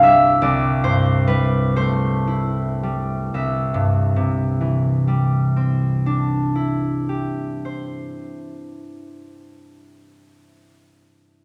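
Bathed in a lush recital-hall reverb, this brief fragment of a longer classical piece features a solo concert harp, bright, ringing and up front, fingerpicked across a span from C2 to G5 in a graceful, dreamy C major 6/8 at a rubato 35-51 BPM, slowing through its first 3.3 seconds over an Am9/C harmony before settling onto Cadd9 at 3.3 seconds.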